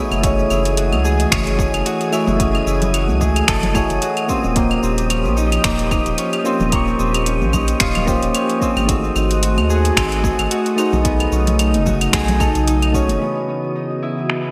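Sunset chillout at 111 BPM in 4/4 with a lightly swung sixteenth feel, wistful and warm, moving through F#m9, D#13, G#7b9 and B13 before settling on C#m11 at 13.2 seconds, where a filter sweep passes over an analog synth pad. Mellow, detuned electric-piano-like synth keys with chorus, 12-bit sampler grit and delay share the space with a ringing, fingerpicked Celtic harp playing filtered arpeggios, an airy, breathy pad holding sustained chords, a dark wind-like tuned noise texture in the background, and a round sine sub bass that stops at 13.2 seconds. An overdriven electronic kick and a deep house kit of cabasa, claves, finger snaps and metallic hi-hat, re-recorded in a large room with gated reverb, sit alongside very quiet, soft-handed congas, and the bright 1980s-style digital production is bathed in a lush hall reverb.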